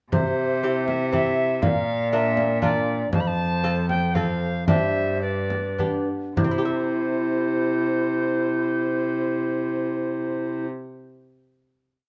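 Festive and courtly, this short renaissance-style consort dance in C major moves in a straight 3/4 at 101-121 BPM, tuned slightly low at A4 = 437 Hz and set in light reverb. A mellow, hollow tenor recorder carries the melody while a pure, chiffy soprano recorder with vibrato sings a second line above it. A delicate fingerpicked lute with double gut strings plays bass and chords on the beats, a rich, nasal bowed cello holds a sustained bass, and a small, bright frame drum taps a dance rhythm until 6.6 seconds, as the music slows from 2.4 seconds into a final C chord at 6.4 seconds.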